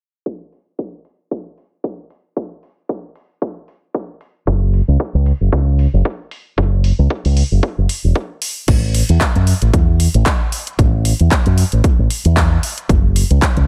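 The fingered electric bass with an envelope filter stands out most, arriving up front at 4.5 seconds with a warm, tube-saturated tone that blends direct and amped sound. This is a sunny, feel-good nu-disco cut taken from a longer piece, set in a swung 4/4 groove. An electronic kick drum opens the track at 0.3 seconds, punchy and overdriven, layered and re-recorded in a large room, sitting prominently in the mix. A house drum kit of crash cymbal, handclaps and hi-hat joins just after, also overdriven and carrying that same large-room character. A filter sweep runs through the opening section until 8.7 seconds, when the arrangement moves into a second section, and the overall sound stays dry and close with a low-pass filter shaping the top end.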